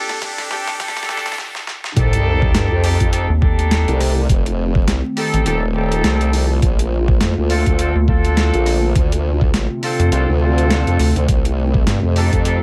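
Dusted with vinyl crackle and light reverb, this funky, playful glitch hop excerpt opens with a riser over a drum fill that stops short before a sub drop lands at 2.0 seconds, where a formant-sweep wobble bass joins a thumpy overdriven electronic kick, a gritty boom bap sampler-style kit of hi-hat, rim click and snare, mellow jazz-style horn stabs with delay, and a warbling, nostalgic tape-like pad that pumps under the sidechain, with a rubbery, hollow square bass following at 3.3 seconds.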